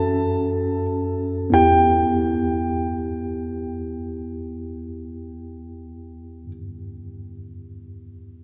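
Bathed in a wet cathedral reverb, this emotional, melancholic pop fragment in E minor unfolds in free time, slowing through its opening as the harmony moves from F#m to Em at 1.5 seconds, with a clear, smooth, vintage-toned concert grand piano carrying a high melody up front until 6.5 seconds over a mellow, clean tine electric piano accompaniment, heard through built-in speakers, that rings on to 8.4 seconds.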